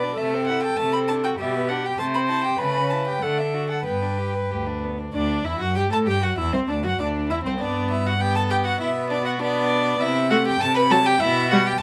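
The first violin leads this cheerful, spirited classical-period string quartet movement with an airy bow and a nasal, close-miked tone, sitting up front as it carries the melody between C5 and B5. All four players use a gut-string, period-style sound with a reedy edge, and the quick 2/4 pulse is played with a flexible, rubato feel. Beneath the melody, the second violin adds a rich second line, and the viola fills in the accompaniment with a smooth top. The cello anchors the bass with a warm, nasal voice that feels set back in the room. The passage moves from an opening section into a second one at 5.1 seconds, with harmonies such as A7/C#, D7 and Bmadd11 before settling on G/B. The clip, which runs to 11.8 seconds, is cut from a longer piece. Light reverb gives the quartet a gentle sense of space.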